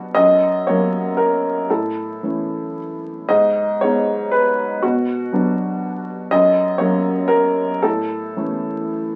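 A woody upright piano plays alone, sitting up front and close, with the soft clatter of its action audible beneath the notes. This is neoclassical minimalist piano music in 3/4, moving at roughly 111-124 BPM with a rubato feel that gives it a melancholic, wistful air. Across this brief 9.2 second cut from a longer piece, the harmony moves through F#, A, G#m, Bm, then back to F# and A, spanning from F#2 up to D#5. The instrument has an intimate, natural character, placed in a wet studio reverb. Over it all lies the crackle of a very old 78 rpm record, lending the recording an aged, faded patina.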